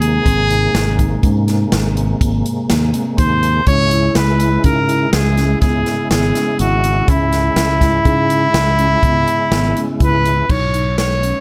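Progressive instrumental band music in 7/4 at 123 BPM with a driving, intricate straight feel, led by a clear, roomy classical-style trumpet melody up front over a smooth tonewheel organ with chorus vibrato, key click and a stopped rotary speaker that drops out at 10.5 seconds, a mellow woody marimba with soft mallets arpeggiating in the background, a direct, amped fingered electric bass, and an airy big-band drum kit of crash, hi-hat, punchy kick and snare, all in light reverb through chords moving from G#add9 to C#m and landing on Badd9 in this fragment cut from a longer piece.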